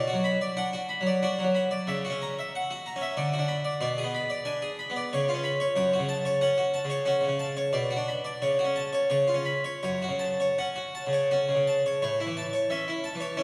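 A classical, baroque-style suite movement for solo harpsichord, this brief passage cut from a longer piece moves in a dance-like triple metre with a serene mood and a gently flexible rubato. The harpsichord, in the Flemish style with two sets of strings, sounds full and plucked, its mid-forward tone placed up front and spanning from F#2 in the bass to B5 at the top. The harmony settles into a minor home from 3.8 seconds, drawing on diminished and dominant seventh chords before resolving, then shifts to a major chord at 12.0 seconds as the opening section begins again. A resonant concert hall or church acoustic surrounds the instrument with a reverb tail of about 2.2 seconds, lending the lines a spacious glow.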